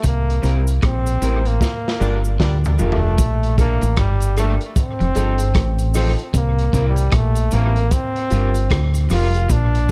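Over a 76 BPM roots reggae groove in Bb major with a 16th-note swing, a crunchy, gritty breakbeat kit and a round, punchy dub bass carry the beat while a clean guitar riff, a cabasa, a chorused, slightly broken-up electric guitar and woody upright piano stabs fill in beneath a brilliant trombone melody with light vibrato and tape echo, with a mellow horn section briefly doubling in octaves from 2.0 to 3.1 seconds during a band accent and drum fill, all in an uplifting, echo-heavy mix cut from a longer piece.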